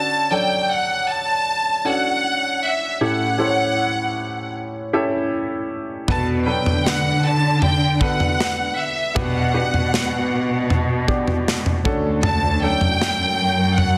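A rich, vibrato-laden violin section sings a heartbroken melody over a warm, smooth grand piano accompaniment in this emotional 78 BPM pop ballad, with a dark, expressive cello section and a modern acoustic drum kit with a tight kick and medium-tuned snare joining at 6.1 seconds, all set in a lush hall reverb and a dense, heavily limited master.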